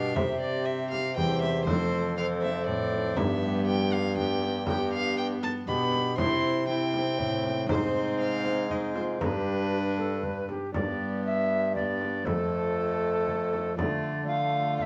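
A hollow, airy tenor recorder carries the second line against a gut-strung violin melody in this stately, courtly renaissance-style consort dance in triple time, a fragment of a longer piece. A thumb-plucked, ringing harp and a distant, bowed viola fill out the accompaniment, a clear bassoon with light vibrato holds the bass, and a deep frame drum played with soft hands sits in the background from 0.2 s. The ensemble sounds through a moderate stone-room reverb as the dance moves into a new section at 10.8 s.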